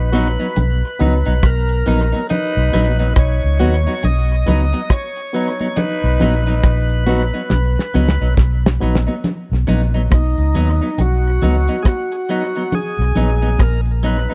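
From its first moment, this laid-back roots reggae excerpt features a growling tenor saxophone, its raspy, breathy tone carrying a light vibrato and tape echo as a second line until 7.2 seconds. Alongside it, an overdriven tonewheel organ holds the melody throughout, thick and gritty with audible key click and a slow rotary speaker. The foam-muted fingered electric bass sits dark, round and up front, joined by a cloth-damped drum kit with a fat snare, tight kick, hi-hat and rim click, its rolled-off top touched with tape echo. A clean, twangy electric guitar supplies accompaniment through spring reverb and tape echo, while a barky reed electric piano adds lightly overdriven stabs in the background until 9.1 seconds, and high-tuned congas with hard hands fill out the percussion. At 69 BPM in B major with a swung sixteenth feel, a drum fill ushers in a new section at 9.2 seconds, all captured in a dry, close 1970s-style studio sound.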